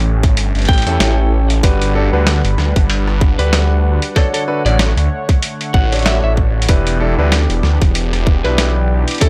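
A dark, dry production opens this gritty, funky glitch hop fragment with a swirling, thick phased saw bass up front and a smooth, chorused analog pad pumping beneath, while a barely audible downlifter ends at 1.6 seconds; a tight electronic kick and a compressed, pitched-down sampler kit of hi-hat, rim click and snare arrive at 0.2 seconds, followed by a slightly broken-up lead guitar with 12-bit grit and dub echo, and clear grand piano stabs that pump and echo over a swung progression moving from A7 through Gmaj7 and Dmaj7 to Em7.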